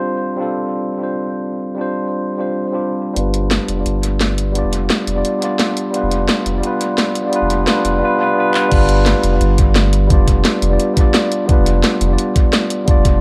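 A clean tine electric piano, heard through a combo amp and sitting up front, opens this melancholic, rolling liquid drum and bass excerpt on its own, shaded by a low-pass filter and dub echo. At 3.2 seconds a deep, round sine sub bass with a fast attack and long sustain arrives alongside an electronic garage kit of cracking snare, handclaps, hi-hat and crash cymbal, layered and re-recorded in a small room, with dub echo on the kit. Through this build-up a filter sweep works on the piano. A drum fill at 8.5 seconds leads into the drop at 8.7, where a gritty, thumpy, sampler-style kick joins, compressed, pitched up and tape-warm. The straight groove sits in an echo-heavy mix bathed in moderate spring reverb.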